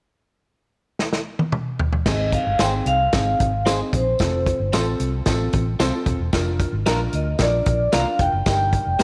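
Uplifting and joyful, this 112 BPM excerpt of uptempo 1960s-style soul opens with a drum fill on a roomy kit with dark cymbals at 1.0 seconds, then at 2.1 seconds a ringing, metallic vibraphone with slow motor vibrato takes the melody over a woody, slightly detuned upright piano, a round foam-muted electric bass, and a jingly tambourine in the background, with bright, scooped clean electric guitar stabs joining at 2.6 seconds as the chords move through Ab, F, Bb/F and Eb in light small-room reverb.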